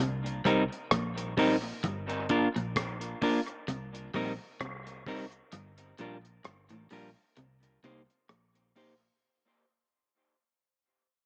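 A slow 65 BPM groove in 4/4 with a light sixteenth-note swing carries this meditative, spacious dub reggae excerpt, where a dry, dark drum kit of tight kick, hi-hat and rim click sits up front beside a round, foam-muted vintage fingered bass, while a clean, hollow-body semi-hollow guitar enters at 0.4 seconds with dub echo over Cm7 and Gm7 and a compressed, slightly broken-up electric guitar riff with its own dub echo lingers in the background, the mix set in light reverb and small-room ambience with a small-speaker tone, fading out throughout and dropping into a break at 5.5 seconds.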